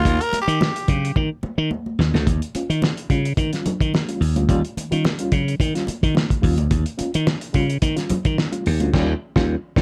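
A raspy tenor saxophone opens this energetic funk cut over a break, its growling, lightly vibratoed line riding on a punchy, growly slap bass that sits up front with tube saturation. The sax drops out at 1.2 seconds as a cloth-damped drum kit takes a fill, its fat snare, tight kick and muffled, dark cymbals giving a thuddy, lo-fi, small-room sound. At 2.3 seconds the harmony moves from Eb7 to Eb9 and a worn, reedy electric piano enters with stabs, slightly out of tune and pulsing with fast tremolo through its built-in speakers. High-tuned congas played with soft hands ring quietly in the background, and the full band hits an accent at 8.9 seconds before this excerpt ends. The production is dark and warm, with little reverb and a faint mains hum beneath the groove.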